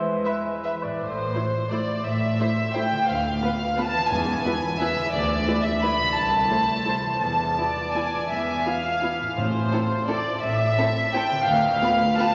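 A warm violin section, bowed sul tasto with a soft attack and up front in the mix, carries a sweeping second line over a dark A minor orchestral ballroom waltz in 3/4, taken with rubato at 151-190 BPM, while another violin section sings the melody and a woody, vibrato-laden viola section, rich cellos and a shadowy double bass section fill out the strings. In the opening second, mellow clarinet, cor anglais and bassoon sound briefly alongside a very quiet French horn section holding sustained chords, and a ringing, fingerpicked concert harp plays arpeggios in the background throughout. Very quiet timpani struck with hard mallets mark 4.1 and 9.4 seconds, and a wet church reverb with a long 3.3-second tail bathes this excerpt from a longer piece.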